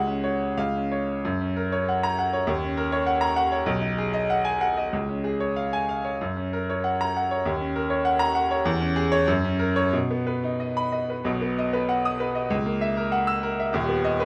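Sparkling and brilliant, this short classical passage comes from a virtuoso piano study, cut from a longer work and lasting about 14 seconds. A solo grand piano carries everything, its bright, smooth tone sitting up front with a vintage character and long sustain, reaching from deep in the bass up into the high treble. The pulse is in two, shaped with a free rubato feel that lets phrases stretch and breathe. The harmony moves through rich changes such as D#m7 and G#m7/B before the music settles toward B from about 8.7 seconds, closing on F#7/C# and B/D#. A moderate studio reverb gives the piano a sense of space.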